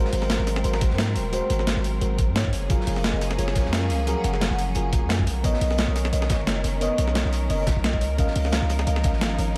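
Two layered breakbeat kits drive this lush liquid drum and bass excerpt at 175 BPM in 4/4, with a gentle swing on the sixteenths: a gritty, overdriven sampler-style kit of hi-hat and snare sits forward, while a dark, saturated acoustic kit with a rolled-off top hums in the background. A knocking electronic kick joins at 0.8 s, and a deep, sine-like 808-style bass sits up front with long, decaying notes. A soft, warbling FM electric piano with chorus, tremolo and delay carries the harmony alongside a rich, bowed string section that glows with vibrato further back. The chords move from Ab9 through Gbmaj9 and Cbmaj9 to Db69. A hollow, woody clarinet-like synth lead enters at 2.4 s and returns at 7.8 s, wrapped in analog chorus and a diffuse ambient delay. The whole mix is soaked in a long cathedral reverb, giving the passage a dreamy, warm mood.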